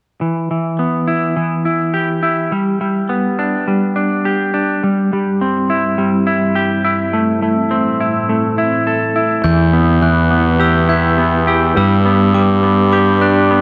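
A lush hall reverb surrounds this brooding, cathartic post-rock excerpt in E minor at 104 BPM, opening with an up-front clean electric guitar picking arpeggios through harmonic tremolo and analog delay. An ethereal, airy pad with ensemble chorus drifts in behind it at 5.5 seconds with mellow sustained chords. At 9.4 seconds a growly, overdriven fuzz bass arrives alongside sparkling glockenspiel arpeggios struck with hard plastic mallets and echoed by analog delay, as the chords move from Em to G.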